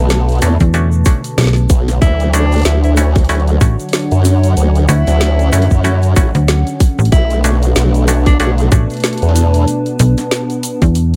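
Playful and swaggering, this glitch hop excerpt struts at 94 BPM with a swung 16th feel over a Dmaj7 chord, built on a tight, up-front electronic kick, an electronic kit with a woody snare and bright hats, a grainy egg shaker in the background, and two bass parts: a detuned, formant-filtered wobble bass with chorus and tube saturation, and a snappy FM bass with a metallic attack that joins at 0.6 seconds. A warm, detuned sawtooth pad with chorus, 12-bit sampler grit and sidechain pumping sustains underneath, while a dark, warbling tape-like pad with built-in reverb sits in the background and a muted, twangy clav stabs through a combo amp with tape echo. From 2.0 to 8.5 seconds a breathy tenor saxophone takes the lead with clear vibrato and a smooth top, its tape echo set against a digital ambience.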